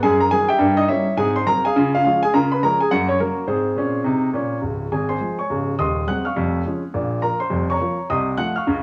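Playful and exuberant, this short stride-piano jazz fragment swings along at 209 BPM in Db major, with a lone baby grand, warm, natural, up front and short in sustain, ranging from the deep bass to the high treble through a quick chord run from Ebm/Gb to F7/C, its cassette-tape coloring and light small-room reverb lending the intimate feel of a home recording.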